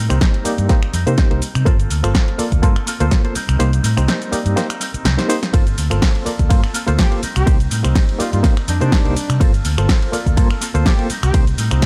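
A punchy, up-front electronic kick drives this sensual, nostalgic filtered disco house excerpt, with a house kit of finger snaps, bright hi-hats, ride, shaker and a punchy snare, its hats, percussion and cymbals pumping against it over a swung groove. A dark, round, foam-muted fingered bass with tube saturation anchors the Cm7 and Gm11 chords. Meanwhile, a barky, reedy electric piano with overdrive, fast tremolo and phaser comps, and a clean, scooped guitar riff through an envelope filter adds tremolo. The kick drops out from 3.6 to 5.5 seconds, closed by a short drum fill, and at 7.0 seconds a warm horn section with light vibrato enters with the melody in a dry, close mix.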